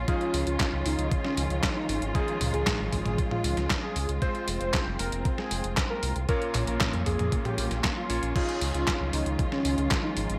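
A straight 4/4 pulse at 116 BPM drives this danceable, bittersweet italo disco excerpt, where a thumpy electronic kick joins a tape-warm detuned 8-bit drum machine with gated reverb on its medium-tuned snare, handclaps, hi-hat, toms and crash, the drum machine sitting up front alongside a round, deep analog bass with tube saturation, while a thick, detuned unison lead carries the melody over veiled, con sordino string chords and clangy electric grand piano stabs in the background, moving from Dbadd9 through Fm and Bbm in a bright 1980s-style digital production with plate reverb.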